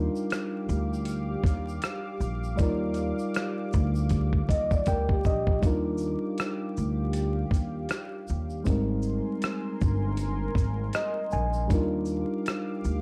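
A dry, gritty recording with light reverb and a bed of vinyl crackle frames this mellow, nostalgic lo-fi hip hop cut from a longer piece, moving at 79 BPM in Eb major with a gentle 16th-note swing. A reedy electric piano sits up front, playing accompaniment chords through its built-in speakers with a touch of plate reverb. Beneath it, a dark analog pad holds sustained, detuned sawtooth chords with a slow attack and chorus, while a woody, growly pizzicato upright bass anchors the low end. A grainy tube shaker enters in the background at 0.2 seconds, followed at 0.3 seconds by a compressed, sampler-style drum kit with a thumpy kick, hi-hat, rim click and shaker, and a drum fill arrives at 4.1 seconds. A soft-mallet vibraphone adds a brief, metallic second line between 4.5 and 5.6 seconds through tape echo, ahead of the harmony drifting from Ebmaj9 to Abmaj9 and back.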